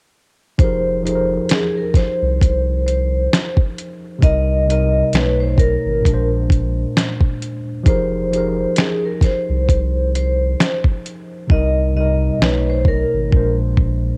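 A dusty, soul-style sampled drum kit sits up front in this melancholic, reflective lo-fi hip hop excerpt. Its compressed, gritty sound comes from a thumpy kick, a medium-tuned snare, hi-hat and finger snaps, and the hi-hats drop out from 11.5 seconds. The tempo is a slow 66 BPM in 4/4 with a swung sixteenth-note feel, and beneath the drums a soft dub sub bass holds deep, round, sustained tones with a fast attack. A worn, slightly out-of-tune tine electric piano plays mellow accompaniment through a low-pass filter and cassette tape colouring, moving through Fm11, Cm7, B9 and Bb9. Over it, a vibraphone struck with medium hard mallets carries the melody in a metallic, ringing tone with medium motor vibrato, also filtered and tape-treated. The home cassette recording is dry, with little reverb.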